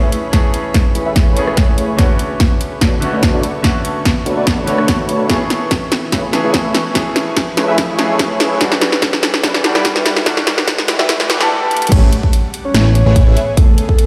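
A half-time 4/4 pulse at 145 BPM drives this bright, lush future bass excerpt in A major, with a punchy, up-front electronic kick and a big-room dance kit of punchy snare, rim clicks, metallic hats and crash cymbal, both set in studio reverb, carrying a drum fill through the build-up. Over chords moving from Amaj9 through Bm9, Amaj9/C# and Em9, a brilliant grand piano with short sustain plays accompaniment while a bold, detuned sawtooth polysynth riff, thickened by lush chorus and tape echo, rides a filter sweep, and both pump against the kick with a fat, saturated analog bass sitting in the background. A shimmering, ethereal pad with an octave-up glitter holds very quiet sustained chords, and a faint electronic riser climbs beneath the whole build. At 11.9 seconds the drop lands back on Amaj9 as the piano stops and a soft, round, octave-layered synth lead takes the melody, its dark, full-bodied tone coloured by chorus, phaser, vibrato and tape echo. 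The mix sits in a moderate lush hall reverb and a stony room sound, giving the excerpt a spacious, glossy finish.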